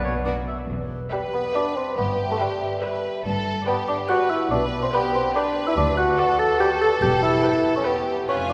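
Bathed in a wet church reverb, this sneaky, quirky fragment of a whimsical film cue in E minor moves at 142 BPM in 3/4: a bell-like, close-miked celesta carries the melody alongside a very quiet violin section, while an up-front mellow bassoon, distant French horn chords, a rich second violin line, lush violas, a background cello section and bowed double basses entering at 0.7 s fill out the harmony, and a soft clarinet and a roomy cor anglais sound only in the opening moments.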